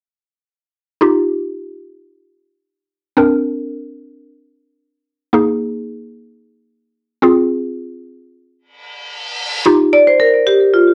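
A woody, warbling synth pluck with a vintage FM tone and a chorus shimmer opens this upbeat, carefree pop excerpt at 111 BPM in Eb major, cycling through Ebadd9, Bbadd9, Absus2 and Fm with a cassette-tape character before an electronic reverse cymbal rises at 8.8 seconds into a bright, up-front marimba melody played with hard mallets, all set in a wet, short studio reverb with a homemade cassette feel.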